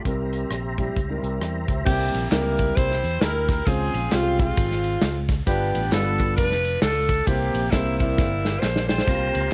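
A bright, vibrato-rich saxophone section carries the melody from 1.9 seconds in this solemn, fervent uptempo gospel excerpt at 133 BPM with a swung feel, over a deep, long-sustaining grand piano that plays a fill from 1.0 seconds, a round, amped fingered electric bass, an up-front acoustic drum kit with punchy kick and dark cymbals that fills at 8.2 seconds, sustained chords from a lightly overdriven tonewheel organ with key click and slow rotary speaker, and tambourine and handclaps in the background, captured as a small-room home cassette recording with light reverb.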